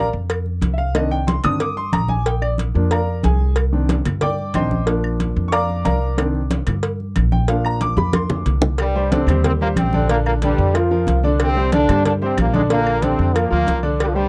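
Driving and fiery, this salsa excerpt in C minor moves at 184 BPM, with a clear, vintage concert grand piano taking a solo over Cmadd9 and Bb chords while a dark, thumpy pizzicato upright bass, ringing congas, tight high-tuned cowbell and bongos, and woody background claves keep the groove, a drum fill at 8.0 seconds leading into a bright, punchy trombone section carrying the melody from 8.8 seconds, all captured in a dry, close 1970s-style studio sound.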